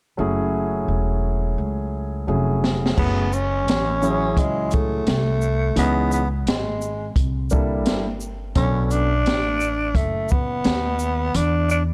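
Nocturnal and cool, this jazz-hop excerpt moves at 86 BPM in 4/4 with a swung sixteenth-note feel in F# minor. A vintage, mellow baby grand piano with long sustain lays down smooth chords beside a woody, pizzicato upright bass from 0.2 seconds, the harmony moving from F#m9 through C#m7, C13 and Bm9 before settling on an E7 chord with its third omitted. An acoustic jazz kit arrives at 2.6 seconds with its boomy kick, high-tuned snare, hi-hat, shaker and shadowy crash cymbal. At 3.0 seconds a growling tenor saxophone takes the solo, breathy and raspy in subtone, with vibrato, scooped notes and a soft attack. The parts all sit up front in a small room with light reverb, giving the piece a dark, warm production.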